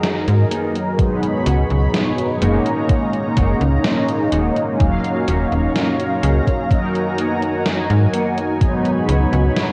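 A snappy, slap-like FM bass sits up front in this faded, woozy vaporwave excerpt, its metallic, fast attack decaying over a slow 63 BPM in 4/4 and F# major, entering at 0.3 seconds. An overdriven, thumpy electronic kick drum arrives at 1.0 second, joining a gated 80s digital drum machine that has carried hi-hat and a gated-reverb snare from the start, both sampler-style drums re-recorded in a small room. Mellow synth brass, round, detuned and dark with vibrato and a filter sweep, carries the accompaniment up front through ensemble chorus, cassette tape and analog delay. A lush unison pad holds thick, bright sustained chords with a slow attack and long release, while a clean, fingered electric guitar riff, shaded by chorus, low-pass filter and delay, stays in the background. The harmony drifts through G#m9, C#7sus4, F#6 and D#m7, all bathed in a dreamy plate reverb with cassette haze.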